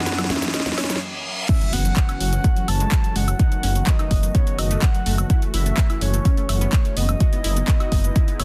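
A riser and drum fill open this expansive, bittersweet progressive house excerpt at 126 BPM in F# dorian, with a filter sweep on the smooth analog pad, a mellow sidechain-pumped unison pluck arpeggiating, a soft, round octave-layered lead singing a chorused, delayed melody, a faint granular sparkle, and ringing woodblock, congas and cowbell in the background. After a reverse cymbal and a brief stop at 1.0 seconds, the drop lands at 1.5 seconds on an impact, bringing in a punchy, overdriven, up-front kick, with a deep, rumbling detuned saw bass on F#1 with tube saturation following at 1.7 seconds. An overdriven house kit with cracking snare, bright hats, handclaps, cabasa, crash and woodblock drives a dense, heavily limited, nearly dry mix over chords moving from Emaj7/F# through F#m7, B7/F# and A6/F#.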